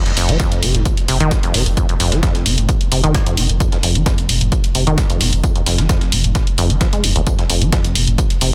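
A squelchy, resonant sawtooth acid bass riff sits up front from the start, moving through a filter sweep with vintage 12-bit sampler grit, dub echo and sidechain pumping, in this hypnotic, industrial cut of driving peak-time techno in F minor at 131 BPM. A deep, thick, tube-saturated sine sub bass holds F1 beneath it with its own sidechain pumping, while a punchy analog kick, up front and entering at 0.4 seconds, joins an electronic hi-hat re-recorded in a large room and a compressed, sampler-style breakbeat kit with a high-tuned snare and tambourine, high-pass filtered and tucked in the background. The dense, heavily limited mix carries light digital ambience.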